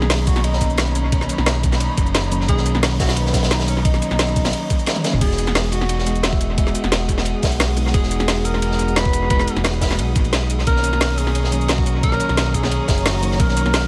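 Dreamy and warm, this excerpt from a longer liquid drum and bass piece runs at 176 BPM in a straight 4/4, set in E lydian and moving from Bmaj9 to Emaj9 at 5.2 seconds and back to Bmaj9 at 10.7 seconds. A mellow, distant tenor saxophone carries the jazz-style solo melody with a subtone and scooped notes, while a clean tine electric piano, heard as if through its built-in speakers, supplies chords, both parts trailing tape echo. Behind them a dark, bowed chamber string section holds expressive sustained chords far in the background, pumping with sidechain, and a smooth gliding synth bass sits up front with vibrato, portamento and tube saturation. The drums layer an overdriven electronic kit with a woody snare, bright hats, toms, shaker and crash under dub echo, a gritty, rolled-off breakbeat kit with dark cymbals and a ride, and a knocking overdriven electronic kick that comes in at 0.3 seconds. 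A drum fill at 4.9 seconds leads into the second pass of the section, and the whole mix sits in a small room with light reverb and plenty of echo.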